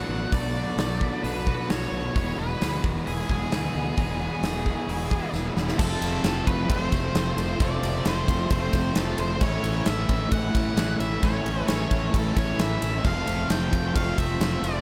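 A huge arena drum kit sits up front in a pumping hall, its punchy kick, medium-tuned snare and bright cymbals driving this hazy, dreamy shoegaze and dream pop rock excerpt at 132 BPM in a straight 4/4. A growly, fuzz-drenched fingered bass runs beneath it, while a dark octave-fuzz lead guitar carries the melody through distortion and tape echo. Layers of guitar thicken the wall: a crunchy overdriven riff with reverse reverb in the background, a very quiet thick fuzz riff, and faint twangy, compressed clean arpeggios. An ethereal, airy pad with ensemble chorus and a moving notch holds mellow, detuned chords high above, and a jingly, saturated tambourine adds a quiet shimmer. After a drum fill at 5.3 seconds, a bright, double-tracked raw garage guitar riff joins at 5.8 seconds as the harmony shifts from Bm7 and Eadd9 to F and Amaj7, all under light reverb.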